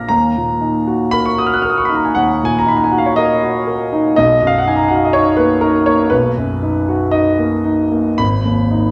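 Melancholic and wistful, this brief excerpt from a romantic nocturne for solo piano drifts in Eb minor at a slow 53-63 BPM in 4/4, its rubato feel letting the phrases breathe freely. The grand piano sounds warm and present, sitting up front with long sustain across a span from Ab1 to Gb6, while the harmony moves from Ebm to Bmaj7 at 4.2 seconds and arrives on Abm at 8.2 seconds. A wet recital hall reverb places the listener further back in the room, lending the 8.9-second passage a spacious glow.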